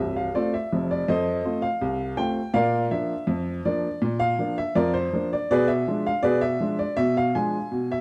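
A dark production wraps this short fragment in a moderate echo-chamber reverb, giving the recording a roomy glow around a close, intimate core. It is a cheerful, lively piece of ragtime at 81 BPM in 2/4 with a straight feel, tuned slightly high with A at 441 Hz. A solo upright piano carries everything from 0.0 to 8.0 s, sitting up front with a woody, boxy tone and the mechanical action clearly audible beneath the notes. Its range reaches from the deep bass at C1 up to G#5, moving from F to Bb at 2.6 s and on to a diminished seventh on B at 5.5 s. The piece is cut from a longer performance, so this brief passage sounds like a snapshot of an ongoing tune.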